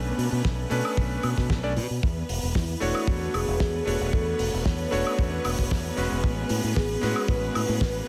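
Groovy and feel-good, this short nu-disco excerpt moves at 114 BPM in a straight 4/4, set in E mixolydian with chords passing from Bm9 to E13sus4 and settling on Amaj13. A tight, dry kick sits up front, joined by a damped 70s kit with a fat snare, hi-hat and woodblock, both drum parts carrying a studio reverb. A bright fingered electric bass, direct and forward in the mix, anchors the low end, while a clangy, vintage electric grand piano comps with a cutting edge and a string section sustains smooth, bowed chords with vibrato, both breathing with sidechain pumping. At 2.6 seconds a soft, round synth lead enters with the melody, layered with a sub octave and dressed in chorus and phaser for a dark, full tone. The whole piece sits in a small room ambience, cut from a longer track.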